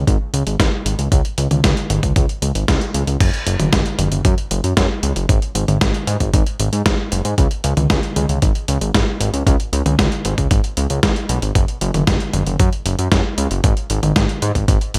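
Nostalgic and melodramatic, this short cut of italo disco at 115 BPM rides a fat, detuned sawtooth analog bass with filter sweeps and a fast, decaying attack, joined at 0.1 seconds by a gritty, overdriven sampler-style soul kit with a medium-tuned snare, hi-hat, toms, crash and gated reverb, plus a thumpy electronic kick, all set in a small, fairly dry room, with a band accent at 2.7 seconds leading into the second section at 3.2 seconds.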